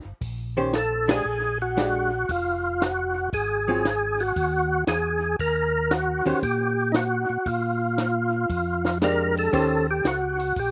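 Soul jazz organ trio with a soulful, greasy swing, cut from a longer piece, where a mellow, round tonewheel organ lays down the bass line with overdrive, chorus vibrato and a slow rotary speaker, and a compact cocktail drum kit enters at 0.2 seconds with dry, dark cymbals, a high-tuned snare, a tight kick and a touch of slapback echo. A clean, hollow-body archtop guitar comps with a picked, compressed tone from 0.6 seconds, and a percussive tonewheel organ sits up front from 0.8 seconds, playing the melody with third harmonic percussion, light overdrive, rotary speaker and slapback echo. The band hits an accent at 1.0 seconds, the chords move through Eb, Bb and Ab colours, and the sound is dry with little reverb, recorded outdoors.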